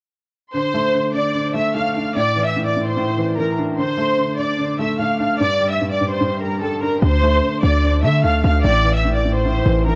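This excerpt from a longer hip hop and trap piece opens at 0.5 seconds with a lush, bowed violin section carrying the melody over a felt-muted upright piano, both softened by a low-pass filter. The strings are expressive and ensemble-rich, with vibrato, portamento and a soft attack, sounding distant yet up front. The piano accompaniment is muted, mellow and intimate, moving through Dm7, Asus4 and Gm in D minor at 148 BPM with a half-time feel. At 7.0 seconds a punchy, heavy 808-style bass arrives up front, its sine tone layered with noise and its fast attack decaying, adding a hard-hitting weight to the eerie mood. The whole is dry and gritty, with transformer saturation and a small room reverb.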